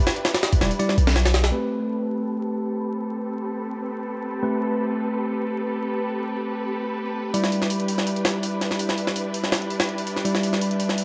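A rich, lush string section opens on sustained chords, bowed with vibrato and filtered to a soft, rounded tone, joined for the first moment by a barely audible, breathy wind-like texture. This atmospheric, raw drum and bass and jungle cut, taken from a longer piece, runs at 165 BPM in A minor. Gritty, compressed sampler-style jungle drums with a thumpy kick and a high-tuned snare arrive at 0.1 seconds, followed at 0.6 seconds by bell-like electric piano stabs soaked in dub echo and a deep, mellow 808-style bass that sits up front until 1.5 seconds. At that point the kick has already dropped out, the drums and bass fall away, and the harmony moves from Em7 to Am9 as a filter sweep runs through the strings beneath the bright tine piano. The drums return at 7.3 seconds as the chords shift back to Em7, all set in a lush hall reverb with a layer of vinyl crackle.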